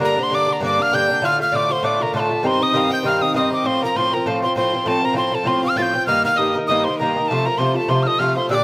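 A tin whistle, a fiddle and an Irish bouzouki all start together at 0.0 s in this wild, dark and lively Celtic folk reel, cut from a longer piece and running to 8.6 s. The metal whistle carries the melody up front, airy and close-miked, with a crisp, chiffy attack, vibrato and a tape echo trailing behind it. Beneath it, a single bowed fiddle plays a second line that is clear yet biting and intense, colored by light vibrato and sitting lower in the mix. The acoustic bouzouki sits up front too, its picked double strings mellow with a metallic edge as it carries the accompaniment through a minor-leaning progression moving from Gm through Dm, Cm, F and Eb before settling back on F. The 4/4 reel rides a gentle swing on the eighth notes, tuned slightly under standard pitch, and the close, detailed recording sits in light reverb.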